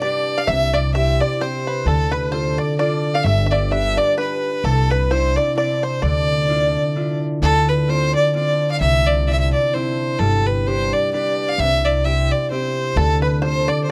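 Dark, lively and wild, this Celtic waltz excerpt in D dorian moves at 130 BPM in 3/4 with a swung feel, a rich, smooth fiddle with light vibrato carrying the melody up front while a twangy, fingerpicked bluegrass banjo adds a percussive second line that drops out at 7.2 seconds and returns at 13.0. Underneath, a bright, ringing concert harp plays the accompaniment and a woody pizzicato upright bass enters at 0.5 seconds, the chords circling through Dm, G, C and added-ninth colours. The sound is dry and close, like a 1970s studio recording.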